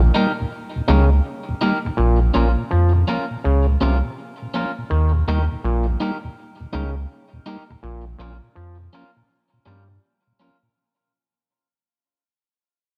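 A deep, round dub sub bass sits up front in this sunny reggae excerpt, its soft square-ish tone anchoring a warm, swung groove in 4/4. Around it, a mellow tonewheel organ supplies flute-like, clean accompaniment with chorus vibrato, audible key click and a stopped rotary speaker. An electric guitar at the edge of break-up adds a bright, twangy, compressed picked part, trailed by tape echo. From 0.9 seconds an auto-wah clav plays a percussive, stringy riff, overdriven through a combo amp with an envelope filter. The harmony alternates between Eb and Bbm, and the dark production, touched with light digital reverb, fades out across the whole clip.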